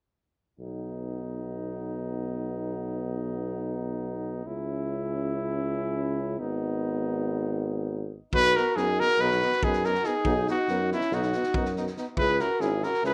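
A brilliant, vintage trombone, a soft-attacked euphonium and a roomy tuba with vibrato open this wild, virtuosic Balkan brass band excerpt in 9/8 at 279 BPM in B major, and at 8.3 seconds a clear, lightly vibrato trumpet takes the melody up front while a close-miked alto saxophone adds a second line in the background and a saturated, gritty acoustic drum kit with tight kick and rolled-off top joins, all in a rough home-demo mix with small-room reverb.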